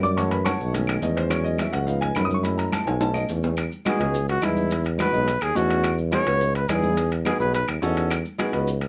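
Afro-Cuban jazz at a brisk 212 BPM in E major, this short passage from a longer piece feels sunny and sophisticated. A warm concert grand piano with audible action noise and deep bass opens as the featured voice for the first 3.6 seconds, moving through chords such as F#m7, B13 and C#7, before a drum fill leads into a mellow trumpet solo from 3.9 seconds. The trumpet carries the melody with light vibrato and scooped notes, its smooth top sitting up front over a close-miked tuba bass with a soft attack. Bright, thin-skinned congas and woody claves sit in the background with a distant, roomy sound, while ringing metal-shell timbales and grainy maracas add a tighter, smaller-room sparkle. The recording is close and detailed with little reverb, and the harmony settles on a cycle of Emaj7, C#m7 and B7 under the horn.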